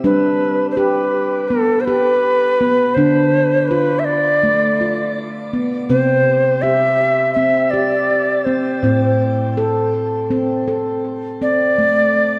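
A mellow Native American-style cedar flute and a handpan sound together from the opening moment. The flute carries an airy, woody melody with vibrato, a crisp chiff on its attack and rolled-off highs, while the ringing nitrided-steel handpan, played with the fingertips, sounds arpeggios beneath it, both up front and steeped in shimmer reverb and tape echo. Set in a wet concert-hall space with a dark, warm production, this gentle, meditative world fragment moves through G, D minor, C and A minor before arriving on a bare D fifth at 11.8 seconds, and it is cut from a longer piece.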